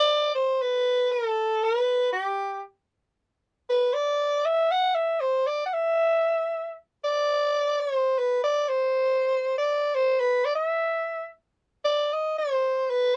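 Bittersweet and soulful, this short klezmer excerpt moves at 117 BPM in a straight 4/4, set in E minor with tuning slightly above standard pitch at A4 = 441 Hz. A raspy soprano saxophone plays alone from start to finish, carrying a solo line that stays between G4 and F#5. Its tone is clear yet gritty, shaded with vibrato and a pop-style phrasing, and it sits up front even while carrying a distant, roomy quality. The recording has a dry, close 1970s studio character, touched with light reverb. At 11.9 seconds the music shifts into a new section, which runs until the cut at 13.2 seconds, as the excerpt is taken from a longer piece.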